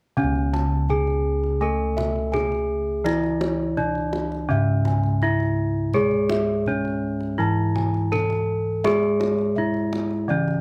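Hypnotic and stately, this Javanese gamelan excerpt moves at 83 BPM in a straight 4/4 in C# pelog, tuned slightly below concert pitch at A4 = 439 Hz. Each part plays from 0.2 to 10.6 seconds. A bronze metallophone carries the melody with a ringing, horn-mallet tone that sits up front in a boxy small room, while a second, lower metallophone plays the accompaniment with a darker, smoother sound. Two sets of bossed gongs fill out the texture: one plays round, beating arpeggios in the high register, placed mid-forward. The other holds the bass and is the loudest part, close-miked, dry and full. The kendang adds tight, hard-handed acoustic percussion that sounds distant, as if in a large room, and the whole production has a dark, warm character with light reverb.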